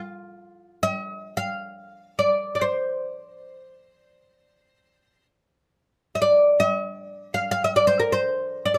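A light reverb gives the room a gentle halo, and the solo oud sits up front in this short cut from a longer piece of Arabic maqam ensemble music. The oud enters at 0.8 seconds and plays alone until 8.8 seconds, in free time with a stately, warm mood. Its fretless, plectrum-plucked double strings sound bright and woody, with a deep body. The line moves between Bb4 and F5, and the instrument is tuned to A4 = 438 Hz.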